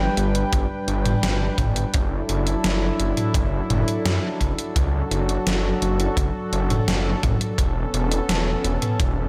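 A steady, straight 4/4 pulse at 85 BPM carries this romantic, dreamy synthwave fragment in D major, cut from a longer piece. A detuned saw bass sits up front from the start, thick and lush with chorus, holding the low end while a smooth analog pad sustains chords above it, its slow attack softened by chorus and breathing with sidechain pumping. The gated 80s digital drum machine enters at 0.2 seconds with hi-hat, snare and toms, its overdriven, sampler-style hits re-recorded in a large room and crowned by a gated reverb snare. A boomy, gritty acoustic kick joins at 0.5 seconds, saturated and rolled-off on top, with its own pumping small-room character. The harmony moves from G to Dadd9/F# and settles on Aadd9/E near the close, all wrapped in light reverb and a small room ambience.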